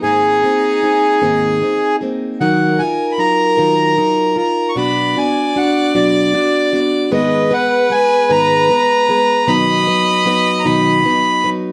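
A reedy, boxy, up-front accordion carries the melody in this nostalgic, peaceful acoustic folk clip in a slow 6/8 at 51 BPM. A rich, bowed solo fiddle adds a focused, smooth second line with light vibrato, while an up-front picked plugged-in steel-string acoustic guitar supplies the accompaniment with audible finger squeak. The dark, warm production has moderate studio reverb, and the harmony moves from G#add9 through D#madd9, Bm and G#m to B.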